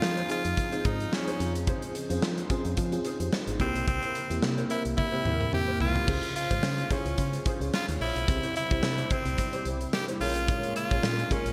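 Bright, 1980s-style digital production with light studio ambience frames this dramatic, nostalgic pop fragment, where a raspy, gritty tenor saxophone with digital delay carries the melody up front over a lush, chorused FM electric piano, a swirling phased analog pad that enters at 0.3 s, a clean, fingered electric guitar riff tucked into the background, a punchy, round FM bass and a big rock drum kit treated with gated reverb, whose fill from 5.0 to 6.1 s leads into a new section.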